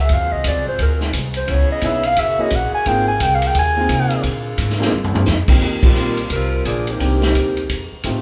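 A live-in-one-room big band sound with moderate studio reverb frames this brief, joyful swing excerpt in Eb major at 174 BPM, where a dark clarinet with subtone, scooped notes and light vibrato solos up front over tight, mellow saxophone chords, a woody, thumpy pizzicato upright bass and a roomy, distant drum kit with boomy kick and rolled-off top. A clear baby grand piano with audible action noise joins at 1.8 seconds. The clarinet's line ends at 4.2 seconds, and after a drum fill a band accent at 5.8 seconds brings the saxophone section onto the melody, now farther back in the room, over chords moving from Eb69 through Cm7 to F9.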